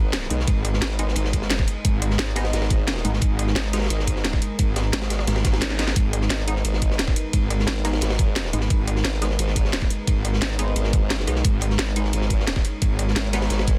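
Tense and futuristic, this excerpt of dark technical drum and bass runs at 175 BPM in G# minor, driven by an up-front metallic wobble bass, distorted and tube-saturated with sidechain pumping, stacked over a sawtooth formant-sweep wobble bass, while a knocking electronic kick enters at 0.5 s and drops out from 5.6 to 6.0 s around a drum fill at 5.7 s. Two kits share the groove: a layered electronic kit up front with a cracking snare, bright hats and rim clicks, and a dark, smooth acoustic breakbeat kit with a high-tuned snare and high-pass-filtered ride. In the background, a deep, detuned ambient pad holds sustained G# minor chords with chorus and pumping, and a muted dub chord stab adds mellow filtered plucks through phaser, cassette tape and dub echo, all in a dense, heavily limited, dry mix.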